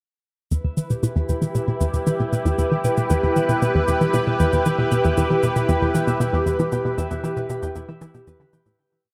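A light, analog machine pulse of shaker and low bongo, touched with tape echo, sets a straight 116 BPM in 4/4 for this mysterious, cosmic piece of sequencer-driven space music in E minor, resting on an Em chord. Up front, a hollow, bouncy, detuned square-wave pluck with chorus repeats a low 5-step riff that drifts against the bar, and at 1.2 s a lush, thick unison pad with sub octave, chorus and phaser adds slow-attack sustained chords. In the background, a fingerpicked concert harp fades in with a ringing 7-step arpeggio while a pulsing, tempo-synced gated texture holds a high B4, all in a wet spring reverb with heavy echo before the piece fades out from 6.0 s to 8.8 s.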